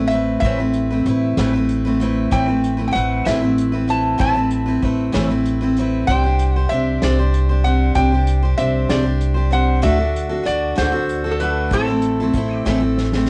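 This home recording on cassette has a soft, dulled top end and a light reverb, and it is cut from a longer piece. It is wistful, melancholic acoustic folk for a small band, moving at 64 BPM in a straight 6/8 and set in A dorian. A full-bodied dreadnought steel-string guitar with fresh strings sits up front with picked accompaniment and the odd finger squeak. Beside it, a woody pizzicato upright bass holds the low end. A metal-body resonator guitar carries the melody on slide, played with fingerpicks, its tone bright, metallic and nasal. An unplugged kit in a small room, played with bundle sticks and given a cassette-tape colour, adds hi-hat, a tight kick and a medium-tuned snare, closing with a drum fill at 12.7 seconds as the chords move from Amadd9 through Csus2 and D back to Am.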